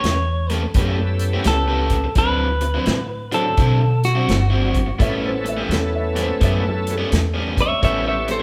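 A band playing live in one room, set in a moderate large studio reverb, gives this soulful, swaggering electric blues shuffle its sound, cut from a longer piece and moving from A9 to D9 and back to A9. Up front, a clean, fingered electric guitar carries the melody through spring reverb over a compressed, overdriven guitar riff, a woody pizzicato upright bass and a natural country drum kit with a punchy kick and medium-tuned snare. A bright, shouting tonewheel organ with slow rotary speaker, key click and chorus vibrato joins at 0.7 seconds, and a dark, mellow upright piano adds a second line in the background from 5.0 to 7.5 seconds.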